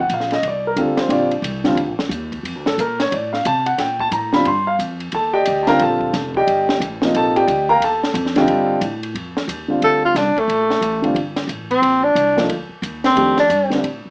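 A mellow tenor saxophone with vibrato and a breathy subtone enters at 9.8 s for a distant, roomy solo that still sits up front, floating over a searching, spiritual modal jazz groove at 179 BPM in Bb major with a swung feel. A dark, up-front baby grand piano carries the accompaniment through Bbmaj9 and Ebmaj9 harmonies, supported by a woody, thumpy pizzicato upright bass and a compact cocktail drum kit with dusky cymbals, a high-tuned snare and a punchy kick. The small-speaker sound and moderate studio ambience give this fragment of a longer piece an intimate, boxy character.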